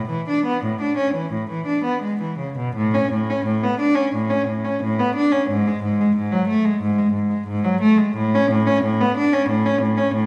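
A rich, focused solo cello opens this radiant, serene baroque-style suite movement in A major, bowed with vibrato by a single player and sitting up front. The tempo moves freely between 81 and 91 BPM in 4/4 with a rubato feel, and a new section begins at 2.8 seconds. A wet recital hall reverb surrounds the cello with the sense of a listener seated further back in the room, and the passage is cut from a longer piece.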